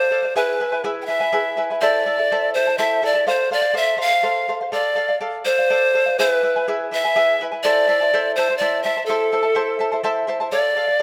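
A breathy bamboo pan flute carries the melody up front, its tongued notes marked by a chiff, a reedy edge and a gentle vibrato that give this Andean folk piece its wistful, melancholic voice. Beneath it, a fingerpicked charango supplies the accompaniment, its double strings, some doubled at the octave, producing a shimmering acoustic sparkle. Both instruments play throughout the roughly 11 seconds, with the close-miked flute sitting somewhat louder than the charango. The music moves in a straight, lilting 6/8, and its harmony circles through E, A minor, F and D minor before closing on D minor at 10.5 seconds. A moderate concert hall reverb gives the pair a spacious, lingering tail, and the passage is cut from a longer piece.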